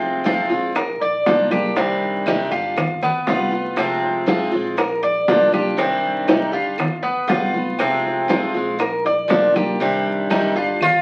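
This short excerpt has the crackle of a very old 78 rpm record and a wet studio reverb around a danceable, sultry Cuban son and guajira groove in minor, cycling through Fm, Bb, Cmadd9 and G7. Up front, a bright, boxy parlour steel-string guitar picks accompaniment while a mellow, metallic tres with double strings plays arpeggios, over woody pizzicato upright bass, round low-tuned bongos, ringing congas and saturated, compressed claves entering at 0.8 s. At 9.8 s the tune turns to a tres solo, and a bright tres melody on F4 breaks through at 10.8 s.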